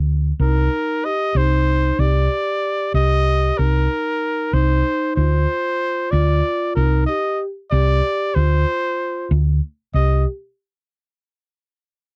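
The recording sounds dry and close, in the manner of a 1970s studio date, with little reverb around the players. It's a driving, brooding progressive instrumental in C minor, cut from a longer piece, moving at 188 BPM counted in eighths in a straight 5/8. A round, dark hollow-body short-scale electric bass, fingered and amped, opens alone at 0.0 seconds and sits up front in a low register around C2 to D2. At 0.4 seconds a warm trumpet takes the melody in a jazz style, playing up front with vibrato, scooped notes and a smooth top, while a vibraphone played with soft mallets and its motor off adds a mellow, metallic, ringing second line just behind. The harmony moves from Cm7 through Dm7 and a bare C5 back to Dm7 before the chords drop away at 10.0 seconds.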